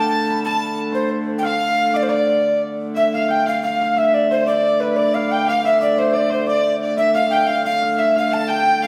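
A mellow, airy tenor recorder carries the tune up front with a crisp, chiffy attack and vibrato in this driving, mysterious medieval dance in a straight 6/8, cut from a longer piece. Behind it, a bright, nasal fiddle sounds distant and earthy while a hammered dulcimer adds a shimmering, ringing second line, all over the dark, woody drone of a wheel-bowed hurdy-gurdy. The band plays live together in one room, bathed in a large, wet studio reverb, and the music shifts into a new section at 3.0 seconds.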